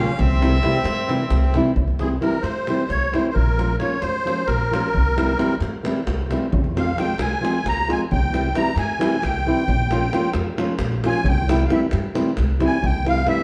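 A wet stone room with a 1.3-second reverb surrounds this Balkan wedding band playing live together, a virtuosic yet bittersweet slice cut from a longer piece. It moves in a straight 7/8 at 265 BPM counted in eighths, in C phrygian dominant, with the harmony cycling between C, Bbm and Fm. A single bowed fiddle with a gut-string, far-off tone carries the melody only until 1.6 seconds, and from 1.8 seconds the musette accordion, shimmering, dark and smooth in its wet tuning, takes an up-front, reedy solo through to the end. Underneath, a classical nylon-string guitar is thumb-plucked with audible finger squeak, while a woody pizzicato upright bass on steel strings holds the low end. A deep davul, set distant in the large room, drives the odd-metre pulse throughout.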